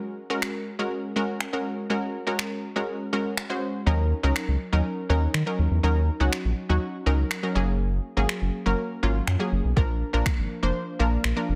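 Dance-pop with an energetic yet bittersweet mood, this short excerpt from a longer piece moves in a straight four-beat pulse over a Gbadd9, Ebm7, Gbadd9 and Bb progression. A vintage analog pluck carries the accompaniment from the start, its detuned, warbling tone bright and decaying, thickened by chorus and sitting up front. A smooth R&B drum kit comes in at 0.4 seconds with finger snaps and a soft, produced electronic kick; the overdriven kit has a small-room character, with soft clipping on the snare. A round analog bass enters at 3.9 seconds, deep and dark, with a sawtooth-and-sine blend, sustained notes and sidechain pumping that give it a breathing motion. The kick drops out from 10.8 seconds, and the whole track carries light reverb and a dense, heavily limited modern master.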